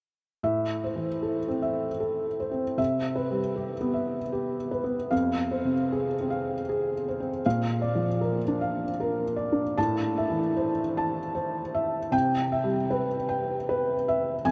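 Neoclassical minimalist piano in A minor at 77 BPM in a rubato 3/4, this reflective, melancholic excerpt features a solo felt-muted upright piano, soft, boxy and intimate with audible action noise, sitting up front from 0.4 to 14.5 seconds and ranging from F2 to A5 over chords moving from Am through Cmaj7, Fm and Bb, all bathed in a vast, echoing space with a huge, wet ambient reverb of 7.7 seconds.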